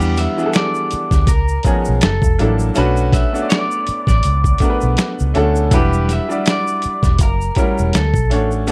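Soulful and sultry, this short neo-soul and R&B cut swings gently over a jazzy minor progression that settles on Bm9, with a twangy, slightly broken-up electric guitar carrying the melody through spring reverb. A bright, woody upright piano and a dark, round, foam-muted electric bass sit up front alongside a gritty, compressed, pitched-down sampler-style boom bap kit that joins at 0.2 s with a thumpy kick, medium-tuned snare and hi-hat. A close, dry tube shaker and handclap-style finger snaps sit low beneath the dark, warm, nearly reverb-free production.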